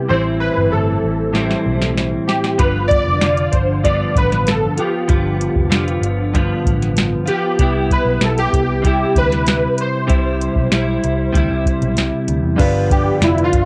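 A moderate booth ambience and home cassette recording give this short cut of sunny, hazy bedroom-pop a homemade glow, moving at 96 BPM in a straight 4/4 in C major. Up front, analog keys carry the melody with a round, detuned sawtooth tone that has a fast attack, a decaying tail and a filter sweep, thickened by ensemble chorus, tape character and analog delay. Beside them, a clean electric guitar recorded direct plays picked, compressed accompaniment with a scooped tone, shimmering with chorus and vibrato. Underneath, a muted picked electric bass sits dark and foam-damped. A soft vintage rhythm box enters with a drum fill at 1.3 seconds, bringing a deep kick, crisp snare, metallic hats and crash cymbal. The chords move from Am7 to G7 to Cmaj7 and back to G7, and at 12.6 seconds, as the keys take a solo, a woody upright piano with audible action noise and plate reverb briefly joins in.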